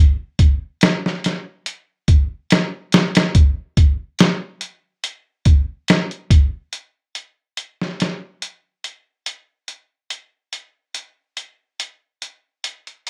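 A brooding, melancholic trip hop groove opens at 0.4 seconds with a sampler-style drum kit playing alone, its hi-hat, kick drum and snare drum set up front in the mix. The tempo sits at a slow 71 BPM in 4/4, with a light swing on the sixteenths. The kit sounds compressed and pitched down, with a muffled, thumpy kick and a medium-tuned snare carrying a small room ambience. After the opening passage, a second section begins at 6.7 seconds and runs until the drums stop at 13.1 seconds. Light reverb and a rough home demo mix lend this fragment, cut from a longer piece, a murky, unpolished character.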